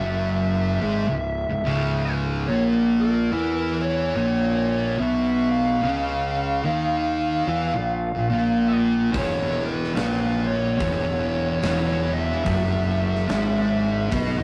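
A rough rehearsal-room recording with tube saturation and light reverb carries this heavy, hypnotic stoner and doom metal excerpt at 72 BPM with a swung feel, where two thick fuzz guitars, one up front and one in the background, grind out the riff over C#m, A#5 and E5 with a growly, overdriven fingered bass, while a dark fuzz lead guitar with slapback echo sings the melody and a big rock drum kit with a fat snare and punchy kick enters at 9.1 seconds.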